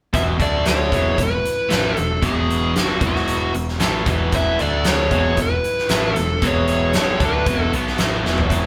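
A straight 4/4 groove at 115 BPM drives this raunchy slice of blues rock power trio and southern rock in E mixolydian, tuned slightly flat to A4 = 438 Hz. The huge arena drum kit sits up front with a fat snare, punchy kick, hi-hat and toms in a big, natural room sound, closing with a drum fill at 8.2 seconds. A bright, double-tracked, crunchy overdriven guitar carries the riff through a touch of spring reverb, anchored by a growling picked bass with its own overdrive, as the harmony moves between E5, D5 and E. The fuzz lead guitar sings the melody with compressed, distorted slapback echo until 7.7 seconds, shadowed by a dark, very quiet second lead line. The whole band plays live in one room with a moderate studio reverb, and the piece is cut from a longer work.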